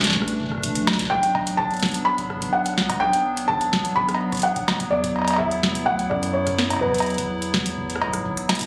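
Intricate and glitchy, this short IDM fragment moves at 126 BPM in a straight 4/4 in B minor, cut from a longer piece. A booming analog drum machine sits up front with a tonal snare, metallic hi-hats, cowbell and rim clicks in a small room, while a dry, deep electronic kick stays in the background from 0.2 seconds. Underneath, a round analog bass with a nasal, plucky filter edge holds the low end, and a hollow, flute-like pad with chorus sustains dark chords moving from Asus4 to Bm and then Esus2. At 1.1 seconds a felt-muted upright piano takes the melody, intimate and mellow with audible action noise, roughened by vintage 12-bit sampler grit and trailed by digital delay. The whole mix is bathed in plate reverb and club ambience and was recorded on a phone in the room, with a drum fill arriving at 8.5 seconds.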